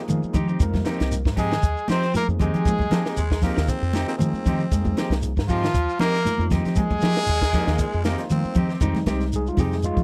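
Driving and hypnotic, this afrobeat groove, cut from a longer piece, rides a light sixteenth-note swing over an Fm9 harmony. A barky, overdriven tine electric piano with medium tremolo, pushed through a combo amp, opens with a short fill and returns for a solo at 8.8 seconds. Underneath, a round, foam-muted fingered bass and a compact cocktail kit with a high-tuned snare and punchy kick carry the pulse, while ringing, hard-handed congas sit in the background and a grainy shekere adds texture. A slightly broken-up electric guitar plays arpeggios through phaser and tape echo, and a bright, clean semi-hollow guitar adds stabs. From 1.4 seconds a clear trumpet with light vibrato leads the melody up front, joined by a breathy tenor saxophone and, from 2.9 seconds, a gritty, close-miked baritone saxophone on second lines. The sound is dry and close, in the manner of a 1970s studio session, with little reverb.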